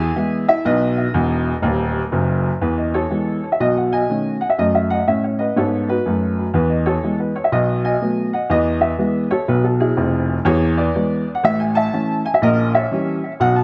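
A clear, woody upright piano plays alone from the start, carrying a swinging, playful stride-jazz passage in E major at 122 BPM. A short piano fill runs from 1.1 to 2.6 seconds before the harmony moves through richer chords such as B13 and, at the close, A#dim7. The piano sits up front with tape echo, set in a moderate spring reverb within a dark production, and the tuning rests slightly below standard pitch at A4 = 436 Hz.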